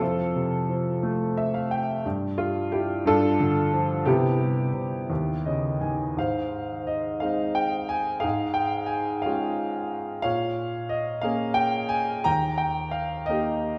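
In a rubato 6/8 lilt at 59 beats per minute, this calm, tender stretch of lyrical classical solo piano, cut from a longer piece, has a clear, worn baby grand with long sustain sitting up front in a wet recital-hall reverb, adding brief fills from 1.0 to 2.0 seconds and again near 5.1 seconds before a drifting opening of shifting chords settles into Ab major at 6.2 seconds for the closing phrase.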